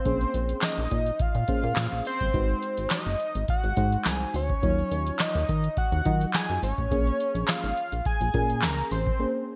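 This short excerpt of early-eighties boogie funk opens with a fat, detuned analog lead carrying the melody with vibrato and a filter sweep, joined almost at once by a booming analog drum machine with a deep kick, tonal snare, metallic hats and gated reverb, a glossy chorused synth bass with a plucky filter, and a soft, round FM electric piano comping under chorus. At 105 BPM in a straight 4/4, the groove moves through Bbm9, Ab7 and Ebm9 for a slick, late-night mood, while a very quiet, hollow group handclap enters at 0.6 seconds. The bright 1980s-style digital production keeps the drums, bass and lead up front under a light reverb.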